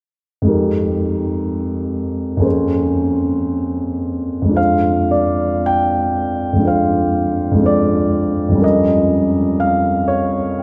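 Hazy and mysterious, this short excerpt cut from a longer piece is impressionist classical writing for solo piano in F minor, moving with a free, rubato feel at roughly 51 to 63 BPM in 4/4. A concert grand plays alone from 0.4 to 10.6 seconds, its tone clear and natural, sitting up front, with a deep bass and long sustain across a range from F2 to G5. The harmony drifts through rich, extended chords, opening on Fm11 and passing to Bbm9/F before a new section at 4.6 seconds settles onto Fm6 and then Bbm6/F. A cathedral-like reverb with a 5.4-second decay surrounds the instrument, as though heard in a church or concert hall, letting each chord hang and blur into the next. The result is a dim, suspended atmosphere that feels more like a passing moment than a complete statement.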